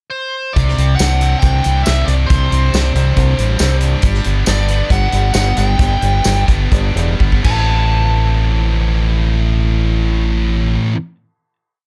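A growling, round fingered electric bass sits up front with driving eighth notes, its overdriven tone anchoring this restless, moody indie rock piece in A dorian at 118-139 BPM in straight 4/4. A thick, double-tracked fuzz guitar picks bright arpeggios over Csus2, G and Am, while a biting lead guitar, entering at 0.1 seconds, states short call-phrase motifs through analog delay. A loose, natural-sounding small-room drum kit plays a 60s soul groove with punchy kick, medium-tuned snare, hi-hat, crash and tambourine, as the tempo slows from 4.0 seconds and a drum fill leads into a dry final hit at 7.7 seconds.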